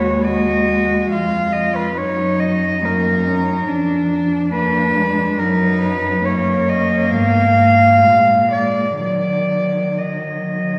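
Heard from further back in a reverberant scoring stage, this short, solemn and melancholic classical passage for four bowed cellos unfolds in Eb minor at a rubato 60-71 BPM in 4/4. A pure, floating cello carries the melody up front with a smooth, soft-attack sul tasto tone, while two intimate, close cellos with light vibrato supply a second line and an accompaniment (the airy-bowed second line sitting quietest) over a dark, woody bass cello. All four sound together through the 10.8 seconds, moving from Eb minor through diminished colours and a Bb7 back to Eb minor.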